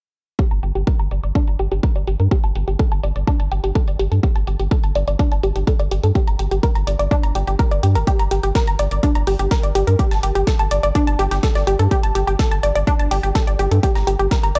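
A dry, gritty recording with a cassette-tape character opens this excerpt of melancholic, dramatic melodic techno in G minor at 125 BPM, where a nasal, detuned sawtooth unison pluck spins arpeggios between D4 and Bb5 through tape echo and sidechain pumping, over a round, wave-folded analog bass that pumps between G1 and G2, both carrying filter sweeps across the chords Gm and Gsus2. A punchy, up-front electronic kick with studio reverb drives the groove alongside a soft, low-passed electronic hi-hat. At 8.1 s a compressed, sampler-style breakbeat kit with a high-tuned snare and high-passed hats joins in the background.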